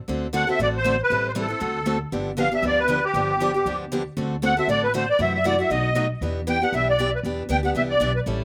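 Swinging and charming, this short cut from a longer piece of acoustic string swing in the jazz manouche style rolls along with a lilting swung eighth-note feel in 4/4. A musette accordion carries the melody from 0.3 seconds, its reedy, shimmering tone sitting up front with an airy quality and a touch of slapback echo. Beneath it, a picked steel-string acoustic guitar provides the accompaniment, sounding bright and boxy with the fresh-stringed, parlour-sized character of a small-bodied instrument, also up front and carrying its own slapback echo. An upright bass played pizzicato on gut strings supplies a woody, dark, thumpy foundation in its low register. The harmony moves through dominant-seventh chords such as D7 and G7 before passing through F#m7b5 and B7 to land on Em7. The sound is dry and open-air, recorded outdoors with little reverb, giving the trio an intimate, close presence.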